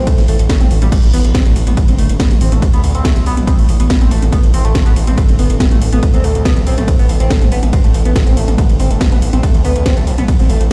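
A straight 4/4 pulse at 141 BPM drives this relentless, intense peak-time techno clip, cut from a longer piece, with a punchy, layered electronic kick and a techno kit of cracking snare, metallic hats, crash and ride cymbals and toms, its hats, cymbals and toms pumping against the sidechain. A gritty, nasal, saturated sawtooth bass sits up front, pumping likewise, while a screaming, guitar-like overdriven lead repeats a dark riff over a rootless Gadd9 colour with subtle chorus, vibrato, delay and sidechain pumping. A very quiet, evolving analog drone enters at 0.2 s beneath it, and the whole sounds as if played on a big sound system in a bare room, with large reverb and lossy compression artefacts.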